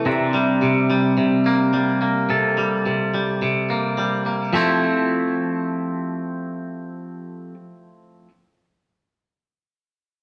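A twangy electric guitar picks clean arpeggios from the first moment, alongside a pedal steel guitar holding sustained chords. Both sit up front in a soaring, euphoric rock passage at 107 BPM in a straight 4/4. In F major, the harmony opens on C7 and settles onto Fmaj7 at 4.5 s. The pedal steel, played with fingerpicks and slide, has a bright, compressed tone shaped by volume swells. The pair sound like a band playing live in one room, wrapped in a wet stone-room reverb. The pedal steel stops at 7.5 s, and the guitar carries on briefly until 8.3 s, where this excerpt cut from a longer piece ends.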